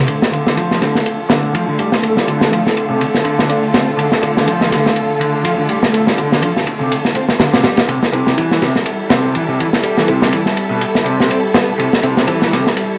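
This gritty, energetic breakbeat excerpt in D minor opens with a muted symphonic string section holding lush, veiled chords, bowed con sordino with vibrato and run through a filter sweep. At 0.1 seconds an overdriven electric guitar enters with a dark, compressed, picked riff, coloured by a low-pass filter and analog delay. A crunchy acoustic breakbeat kit arrives at the same moment and sits up front as the loudest part, with saturated, rolled-off snare and dark ride cymbals in a small room, swung at 123 BPM in 4/4. A very quiet filtered dub stab joins at 0.3 seconds, giving short, detuned sawtooth and pulse-wave plucks with a phaser. The harmony moves from Dm to C6 at 7.9 seconds, and the whole excerpt carries a dry hardware grit with transformer saturation, vinyl crackle and moderate studio reverb.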